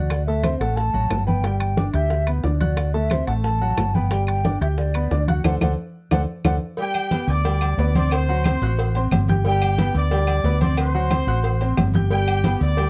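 Salsa with a sunny, danceable lift, this short cut from a longer piece swings between two chords in a fast, straight 4/4. A breathy, mellow concert flute carries the melody first, its crisp attack, vibrato and rolled-off highs giving it an expressive, soft-edged voice until 6.6 seconds. A band accent and drum fill lead to 6.8 seconds, where a distant, roomy trumpet section takes over the tune with clear tone and light vibrato. Beneath them a present grand piano comps throughout, while an up-front fretless electric bass anchors the low end with a round, punchy, amped sound. The percussion bed layers thick-skinned congas, tight high-tuned bongos and cowbell, ringing metal-shelled timbales and agogo bells, and woody claves set back in the mix. Light reverb and a dark production give the whole a cozy glow.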